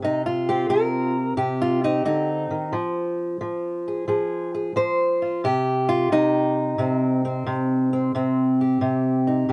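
A moderate booth ambience surrounds a lone fingerpicked acoustic guitar up front, its old ladder-braced body giving a boxy, woody tone and its aged strings a dark edge. This short cut from a longer piece is mournful, brooding acoustic country blues in a swung 4/4 feel, played solo across 9.5 seconds. The guitar spans a two-octave range, moving from C minor to F minor at 2.7 seconds and returning to C minor at 5.4 seconds.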